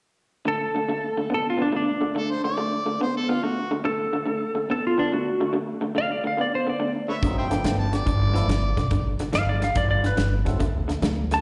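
The recording sounds like a live gig heard through the venue's PA, with light reverb and the airy tail of a recital hall around it. This laid-back, swaggering electric blues shuffle swings: from 0.5 seconds a clean, compressed lap steel carries the slide melody with volume swells, while an electric guitar through a small old amp plays a twangy, slightly broken-up, lo-fi riff beneath it, both up front and touched by slapback echo. At 2.2 seconds a harmonica enters with a second line full of vibrato, tongue slaps and scooped notes, its overdriven tone sitting present in the mix, and it returns later on. From 7.2 seconds the band fills out: a percussive tonewheel organ with key click and a slow rotary speaker adds accompaniment, a woody, thumpy pizzicato upright bass on gut strings steps up front, and a natural country drum kit brings a punchy kick and medium-tuned snare with a small-room sound. 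The harmony moves from D5 to G9 and back to D5, in a clip cut from a longer piece.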